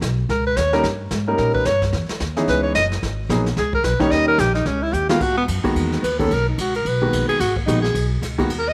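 Small-group swing-and-bop jazz with a late-night feel, this short excerpt features a breathy, whispered alto saxophone soloing up front with vibrato over a woody pizzicato upright bass, a brushed jazz kit with a boomy kick and a drum fill at 4.9 seconds, and an intimate concert grand piano whose action noise is audible, moving through minor-ninth and dominant-seventh changes in a lightly reverberant studio room.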